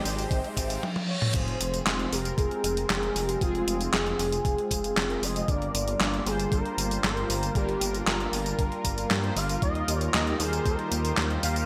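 Synthwave with a moody, driving feel, cut from a longer piece: from the start, a swirling, phased analog pad sits in the background under mellow, brassy synth stabs tinted by chorus, phaser and vintage 12-bit sampler grit, while an electronic riser and reverse cymbal lead into the main section at 1.3 seconds. Up front, a deep, rumbling detuned saw bass with sidechain pumping joins a thumpy electronic kick and a tape-warm 8-bit drum machine of snare, handclaps, hi-hat, tambourine, toms and crash, set in small room and gated reverb. From 1.1 seconds a smooth, expressive synth lead carries the melody with vibrato, ensemble chorus and delay, and the mix has a bright 1980s-style digital sheen with moderate plate reverb.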